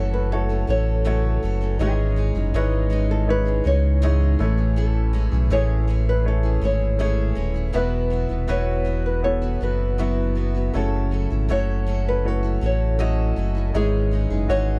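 Pop ballad with a hopeful, emotional feel, built on chords that move from F#m7 through C#madd9, Amaj7 and Esus2. A dark, boxy fingerpicked nylon-string guitar carries the melody over a baby grand piano with a warm, open, long-sustaining tone, while a picked steel-string acoustic guitar plays arpeggios and a deep, full sub bass with an octave sits up front. A distant, roomy French horn section holds sustained chords with light vibrato in the background, all captured in a dry, close 1970s-style studio sound.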